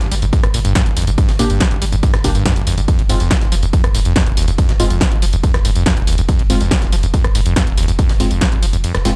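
Driving peak-time techno at 141 BPM, hypnotic and intense, built on a squelchy, resonant sawtooth acid bass riff and a round sine sub bass with overdrive and a low-pass filter, both pumping against an up-front, heavy electronic kick that enters at 0.3 s. A punchy analog drum machine adds hi-hat, ride, rim click, snare and tambourine with a tape-warm large-room sound, while a gritty, compressed, sampler-style breakbeat kit sits very quietly beneath with its own hi-hat and snare. From 1.4 s, crisp, detuned wavetable chord stabs with a moving notch and digital delay pulse through the groove, settling on F minor at 2.9 s in this short cut from a longer piece, all inside a digital ambience.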